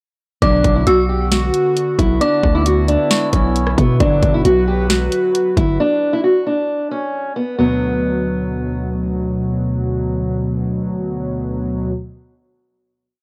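Hip hop and trap in B minor at 134 BPM with a half-time feel, this brooding, eerie piece opens with several parts entering together, led by a fingerpicked steel-string acoustic guitar carrying a looping melody that repeats like a sampled loop, its old strings giving a woody, boxy parlour tone softened by a low-pass filter. A dark, inharmonic FM synth bell adds a sparse counter-melody high above through chorus and tape echo, while a warbly, nostalgic pad holds sustained chords from 1.0 s with chorus and built-in reverb. Fat, brassy analog synth brass punches in with short section stabs, up front and chorused, returning to sustain the final B minor chord from 7.6 s. Underneath, a growling, buzzy 808-style bass plays long sub-bass notes that follow the kick, and an electronic trap kit with a hard-clipped kick, sharp snare, rim click and bright hats drives the half-time beat until 5.7 s. The harmony moves from B minor to G major seventh and back, all within a dry, gritty hardware recording marked by transformer saturation and digital ambience.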